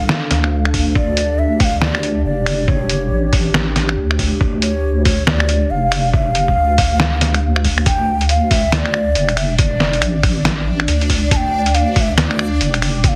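A breathy, mellow ney carries the melody from the very start, its end-blown reed tone softened by vibrato and trailed by dub echo, while a dark analog pad holds sustained chords underneath and a deep, soft wobble bass sits up front, saturated and chorused. This is deep dubstep at 139 BPM in a half-time feel with swung sixteenths, set in D harmonic minor over a D minor chord, and the mood is dark and heavy. A trip hop sampler-style kit of finger snaps, hi-hat and a medium-tuned snare enters at 0.1 seconds, gritty and pitched down, and a thumpy electronic kick joins at 0.7 seconds with the same compressed, lowered grit. The moody pad, with its chorus and phaser, drops out at 7.9 seconds, and at 9.1 seconds a reversed, granular texture swells in, bright and dreamy in its own reverb. The whole passage stays in drop mode, a cut from a longer piece, with light reverb and a heavily compressed, radio-like finish.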